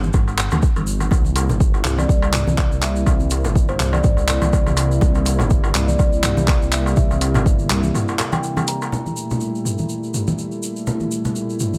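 An up-front, overdriven electronic kick drives this earthy afro house cut at 123 BPM in G dorian, joined by a deep house kit of handclaps, hi-hat and toms, a rumbling detuned saw bass with sidechain pumping, low-tuned congas in the background, a crisp metal-shelled darbuka and a grainy tube shaker, while a smooth, chorused analog pad enters at 1.1 s and a woody kalimba melody with tape echo rings from 2.0 s, until a break at 7.9 s, after which the kit, congas, shaker and pad carry the closing section from 8.9 s.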